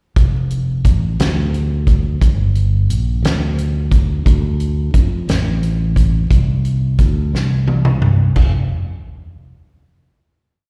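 Slow gospel in 6/8 at 59 BPM, counted in dotted quarters, in F major, with a jubilant yet reverent mood across this short whole piece. A fingered electric bass carries a slow gospel bass line between F1 and F2, its tone warm, direct and up front. An acoustic country drum kit plays a slow six-eight groove on kick, snare, hi-hat, toms and crash cymbal, with a punchy kick, fat snare and dark cymbals sitting close in a small-room sound. The single section runs from 0.2 seconds, and a drum fill from 7.3 to 8.4 seconds leads into a final note that rings until 10.4 seconds. The performance comes across as a live gig heard through the venue's PA, with recital hall reverb around an otherwise dry sound.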